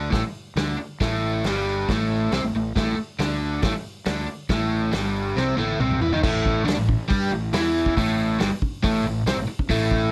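A raw, lightly reverberant garage rock excerpt swaggers along at 138 BPM in a straight 4/4, led by a bright, double-tracked overdriven electric guitar riff sitting up front from G2 to G4 over an A5 chord. Beneath it, a fuzzy, overdriven fingered electric bass adds punch, while a vintage acoustic drum kit with dark cymbals, a medium-tuned snare and a pumping small-room sound plays crash, hi-hat, kick, snare and toms. A drum fill from 5.4 to 6.2 seconds carries the music into a new section that runs to the end.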